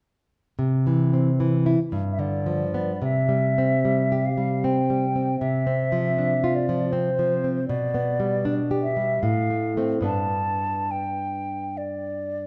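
Bathed in a wet recital-hall reverb, this serene romantic duo excerpt in C major drifts at a rubato 68-80 BPM in 3/4: a dark, up-front, fingerpicked nylon-string classical guitar opens at 0.6 seconds, and a pure, hollow silver concert flute enters at 2.1 seconds to carry a tongued, vibrato-touched melody over chords moving from C through Dm7/C and G/B to F/A and G.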